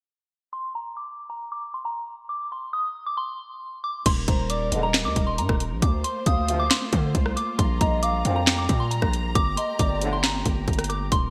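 A bright, 1980s-style digital sheen with light reverb and a low-pass filter frames this dark, hard-hitting trap excerpt at 136 BPM in a half-time feel, opening with a soft, FM-toned synth bell melody treated with chorus and phaser under a filter sweep. At 4.1 seconds the muted, con sordino string section enters on sustained chords alongside a saturated, aggressive 808-style bass and an up-front electronic trap kit with a hard-clipped kick, sharp snare, hi-hats, claps, rim clicks and crash under gated reverb. A hollow, woody clarinet-like synth lead with portamento and digital delay adds a second line, while a mellow, distant brass ensemble punctuates with stabs over chords moving from Eb through Dm7 and Bb6 to Gmadd9.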